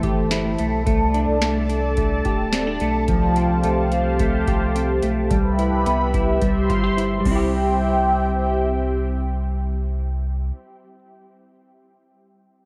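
Steeped in a huge ambient reverb and the warbling pitch drift of worn old cassette tape, this blissful, ethereal dream pop fragment sets a swirling, dark phased analog pad holding sustained chords over a round, mellow sub bass, while a clean semi-hollow electric guitar plays arpeggios through analog chorus and tape echo, and a booming analog drum machine with deep kick, crisp snare and metallic hats drops out at 7.4 s.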